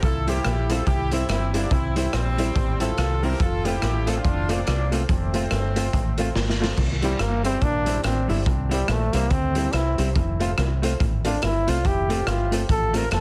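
A swung ska beat at 142 BPM drives this cheerful, bouncy excerpt in C mixolydian, cut from a longer piece and moving between C and F. A raw garage drum kit sits up front with a boomy kick, medium-tuned snare, rim clicks, hi-hat and crash, its gritty, saturated sound pumping in a small room, while a deep dub fingered electric bass, round and punchy, anchors the low end throughout. In the background, a dark, clean hollow-body jazz guitar comps and a woody, boxy upright piano adds short stabs, both touched with analog delay like the drums. A clear, loose horn section with light vibrato carries the melody until 6.3 seconds, and a drum fill leads into a brilliant trombone solo that enters up front at 7.0 seconds and runs to the end. The whole mix has a heavily compressed radio sound with light studio reverb.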